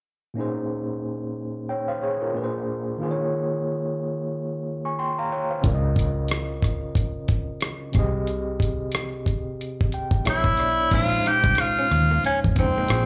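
R&B and neo-soul at 91 BPM with a sultry, soulful 16th-note swing in Bb dorian, this live club snippet opens with a barky, overdriven tine electric piano pulsing with tremolo and slapback echo on its own from 0.3 seconds, is joined at 5.6 seconds by a round, foam-muted electric bass and a thumpy, gritty sampler-style drum kit of kick, rim click, hi-hat and crash, and midway through a piano fill brings in an up-front, raspy, breathy tenor saxophone melody at 10.3 seconds, while a dark, lo-fi guitar with phaser sits in the background near the close, all heard through the venue's PA with club reverb.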